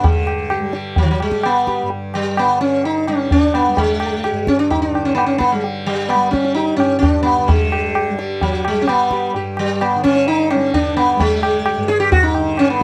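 Hindustani classical music in raga Puriya Dhanashri on G, cut from a longer piece, unfolds at a meditative, serene 129 BPM in a straight 4/4, with an up-front, round, buzzing plectrum-plucked sitar carrying the melody over shimmering sympathetic strings, a bright, softly plucked tanpura drone sitting lower in the mix, and high-tuned, ringing tabla, all captured in a dry, close 1970s-style studio sound that moves into a new section at 7.5 seconds.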